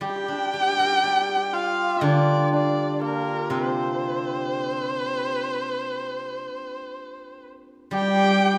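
Chinese traditional chamber music in the G yu mode, this short passage moves at a slow 61 BPM in a straight 4/4 with a tender, graceful mood. A single bowed erhu carries the melody up front, its tone warm and expressive, with vibrato, soft attacks and sliding portamento. Beneath it the hammered dulcimer plays a second line with a shimmering, ringing sound, while the steel-string zither, played with fingerpicks, adds bright, silvery accompaniment across a broad range. Near the end, at 7.9 s, one bowed cello enters on a second line, rich and pure, played sul tasto with a gentle onset and a floating quality. A wet recital hall reverb surrounds the ensemble, and the recording is cut from a longer piece.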